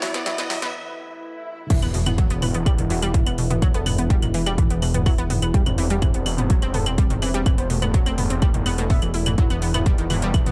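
Melodic techno at 125 BPM in E minor, driving and dark, this excerpt opens on a brief build-up where a house kit with cracking snare, metallic hats, claves, toms and crash plays a fill while a background riser and a filter sweep on the bright, round analog pluck arpeggios lead into a short break and swell. At 1.7 seconds the drop lands with an impact, a punchy, tape-warm electronic kick up front, and a menacing, saturated detuned saw bass on a low E with sidechain pumping. Above it, a smooth, mellow synth lead with vibrato and tape echo sings its melody in the background over a very quiet, moody pad of slow-attack sustained chords moving from Emadd9 through C/E and A5/E to Esus2, all under a light reverb.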